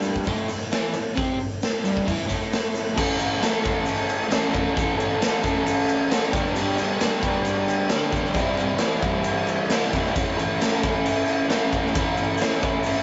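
The crunchy, overdriven electric guitar leads this raw, swaggering garage rock excerpt. Its picked, double-tracked riff sits up front, ranging from G2 to A4. The music moves in a straight 4/4 at 134 BPM in A mixolydian, opening on an A5 chord before a second section begins at 3.0 seconds and runs through A, then G at 6.3 seconds, then C, and back to A. An acoustic drum kit with crash, hi-hat, a boomy kick and a medium-tuned snare plays throughout, also up front; its gritty, saturated sound has a rolled-off top and fills a bright stone room that pumps. A grainy tube shaker sits very quiet in a small room beneath them. The overall sound is a rough rehearsal-room recording, with tube saturation, a moderate studio reverb and nothing above 7.8 kHz.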